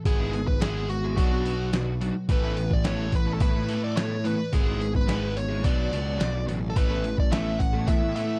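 Wistful yet upbeat, this short indie rock clip in A major moves at a straight 107 BPM in 4/4, cycling through E/G#, Bm and Asus2 chords over a dry, dark production. Up front, a gritty, pitched-down boom bap sampler-style kit with a thumpy kick and medium-tuned snare drives alongside a punchy, fuzz-laden picked bass. Above them, a bright, cranked stack guitar plays a riff, and a dark, smooth lead guitar carries the melody through overdrive and digital delay, while a compressed overdriven guitar adds a background riff shimmering with ensemble chorus and delay.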